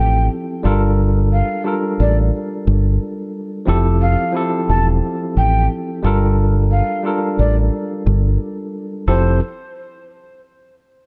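This hip hop excerpt moves at an unhurried 89 BPM in 4/4 with a gentle swing on the sixteenths. It sets a nostalgic mood in F major, with the harmony rocking between Fmaj9 and Gm7. A deep dub fingered electric bass sits up front, round and punchy, with a dark, direct amped tone low in its register. The tine electric piano carries the accompaniment. It sounds worn and slightly out of tune, lightly overdriven and cassette-tinged, as if played through built-in speakers. Above them a breathy, mellow metal jazz flute sings the melody from a distant, hollow place, with vibrato, tongued attacks, a soft chiff and a trail of tape echo. All three parts play together from the start until 9.4 seconds, wrapped in a dark, warm studio ambience.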